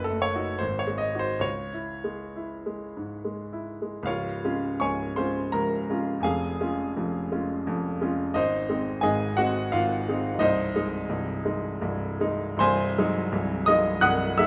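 Classical romantic character piece for solo piano, stormy and brooding, moving in a flexible, rubato triple metre. A bright baby grand sits up front with a brilliant, natural tone, ranging from the deep bass to the upper treble, shifting at 4.1 s from its opening minor-key material into a new section in the major, all bathed in a moderate large-studio reverb. The recording is cut from a longer piece.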